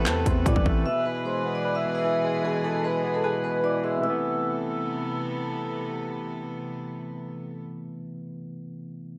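Brooding and eerie, this short trap-flavoured hip hop excerpt sits at 151 BPM in a half-time feel, in A harmonic minor, moving from Amadd9 to E and back. A trap drum kit with a hard-clipped, overdriven kick, bright hi-hats and handclaps hits up front alongside a growling, buzzy 808-style bass, but both drop out by 0.8 seconds, and a barely audible downlifter is gone by 0.9 seconds. A metallic, ringing vibraphone played with medium mallets carries the melody with slow motor vibrato and a delay, stopping at 5.2 seconds. Beneath it, a barky, clean tine electric piano plays accompaniment up front and lasts longest, while a rich chamber string section with a nasal, reedy, gut-string period tone holds sustained chords with light vibrato until 7.6 seconds. The production is dark, with light reverb.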